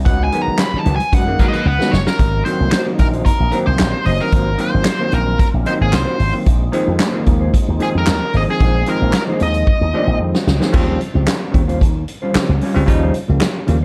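Punchy slap bass pushed through an envelope filter drives this playful, energetic funk excerpt, up front beside a swinging big-band drum kit with handclaps and crash cymbal, while a nasal, overdriven lead guitar with a parked wah solos over the opening 2.2 seconds and carries the melody until 10.2 seconds, bell-like tine electric piano adds clean stabs, a mellow electric guitar sits fingered in the background, and a very quiet percussive tonewheel organ with key click and a slow rotary speaker holds sustained chords, inside a dark production with light small-room reverb.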